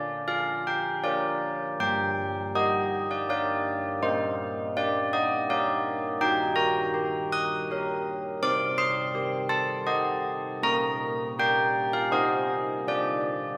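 Solemn and wintry, this short classical excerpt is a tune for church bells in 3/4 at 81 BPM, cut from a longer piece. A carillon plays alone from 0.0 to 13.6 seconds, spanning G3 to Eb6 with a bronze, ringing tone whose minor-third overtone and worn iron clapper give each stroke its character. The bells sit up front, bright and airy, their pitch set slightly above standard at A4 = 441 Hz. The harmony moves from Bb/D through Gm, Eb and Cm before closing on Cm, leaving a minor-tinged gravity over the line. A wet church reverb with a long decay of 3.7 seconds surrounds the bells, so each note hangs in the resonant space of a church or concert hall.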